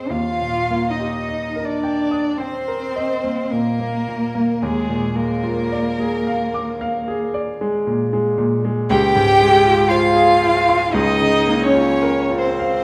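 Classical and romantic in spirit, this serene excerpt from a slow movement for piano quartet drifts in Eb major at roughly 47 to 60 BPM in 4/4, its rubato phrasing unhurried and tender. A violin carries the melody with vibrato, a soft attack and expressive portamento, while a second violin spins a smooth, even line and an up-front cello adds its own singing counter-voice, all three bowed throughout the 12.8 seconds. Beneath them a clear, intimate grand piano supplies accompaniment with its action noise audible, the ensemble bathed in a recital hall's reverberant glow as the harmony slips from Eb through Bb7/Eb to Dbmaj7 and then Bbm/Db near the close.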